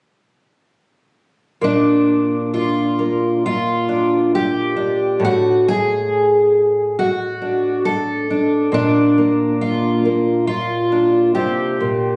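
Folk for solo fingerpicked twelve-string acoustic guitar, nostalgic and hopeful at a rubato 68 BPM in 4/4, the shimmering, octave-doubled dreadnought sitting up front from 1.6 to 12.2 seconds with audible finger squeak, moving from Bb to D/A and back to Bb under light reverb in a phone recording made in the room, in this brief cut from a longer piece.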